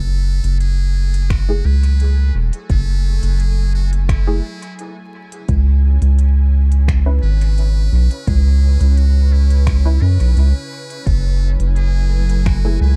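Spacious and meditative, this ambient dub fragment opens with a soft-attack studio string section fading in on floating sustained chords, while a round, nasal analog bass sits up front, moving from F#m9 to C#m7 and back. An electronic kit of finger snaps and smooth hi-hats enters at 0.4 seconds and a deep, tape-toned electronic kick at 1.3 seconds, both in small room ambience, joined by a muted sawtooth chord stab with chorus, cassette tape character and dub echo. From the very start, a buzzy, close-miked trumpet with metal mute carries the vibrato-laden melody through dub echo, all set in dark production with vinyl crackle.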